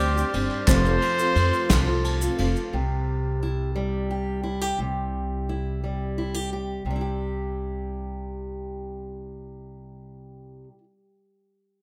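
Indie folk with a hopeful, anthemic lift, this excerpt moves at a slow 58 BPM in 6/8 in C major. It opens with a full ensemble: a clear, classical-style trumpet carries the melody while a mellow glockenspiel played with soft plastic mallets rings above it, and a dark, boxy upright piano, a picked parlour guitar and a floating, sul tasto string section fill in softly behind. A grainy tube shaker and distant handclaps add texture, and a soft brush kit with a punchy kick and smooth ride settles in at 0.3 seconds. The harmony moves from Gsus4 to F, and the piano adds a fill from 1.7 seconds before most of the parts drop out around 2.7 seconds, as the chord resolves to C. From there a bright, up-front fingerpicked guitar with audible finger squeak carries the accompaniment alongside the woody pizzicato upright bass, which plays from the start until 10.6 seconds. Light reverb and small room ambience keep the sound intimate.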